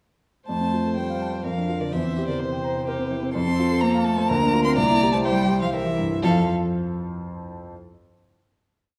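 A quick classical-period movement for piano quartet in triple time, spirited and graceful, played as a complete short piece. A close, warm violin carries the melody with vibrato, portamento and expressive phrasing, while a dark, woody cello doubles the tune at the octave and a rich, focused second violin adds a counter-melody and sustained chords. A mellow, up-front grand piano sweeps through arpeggios beneath them, holding on alone after the strings stop at 6.5 seconds to ring out the final chord in a reverberant recital hall.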